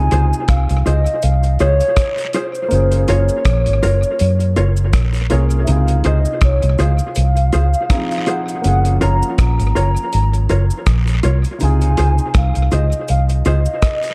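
A hollow, woody clarinet-like synth lead with chorus, vibrato and tape echo carries the melody from the first moment over an intimate grand piano with audible action noise and a round, punchy, foam-muted electric bass up front, as this tender, smooth lovers rock reggae excerpt settles into a swung 81 BPM groove in Db major, moving between Dbmaj7 and Gbmaj7, while a dry 70s drum kit with a tight kick, hi-hat, rim click and a rolled-off top, clean compressed electric guitar stabs with tremolo, and a soft layer of close cabasa and guiro fill out a dark production with light small-room reverb.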